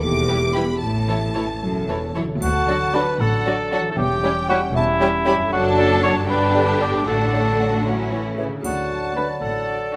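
Playful and mischievous, this whimsical cinematic cue, cut from a longer piece, moves at 77 BPM in 6/8 in D major within a moderate concert hall reverb. A lush violin section carries the melody over a second violin line, a focused viola accompaniment, cello and double bass sections on the bass, very quiet French horn chords and ringing, thumb-plucked harp arpeggios. At 2.4 seconds the texture fills out: a bell-like, delicate celesta joins the melody, a mellow cor anglais sings a second line up front, and a close, dry triangle sounds briefly in the background, returning near the end. Moments later, at 2.7 seconds, an airy flute adds its own second line and a distant bassoon adds accompaniment.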